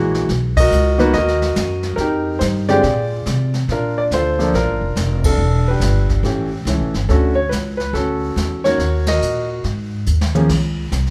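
A swinging, sophisticated jazz piano trio at 141 BPM in 4/4 with a swung eighth-note feel, this short cut from a longer piece sets a natural-sounding concert grand with deep bass carrying the melody up front over a woody, growly pizzicato upright bass and a distant, roomy brush kit with dark cymbals and a punchy kick, all under light reverb, as the band hits accents at 0.5 and 5.2 seconds and the chords move from Bmaj7 through Em7 and A7 to Dmaj7 before a brief drum fill at 10.1 seconds.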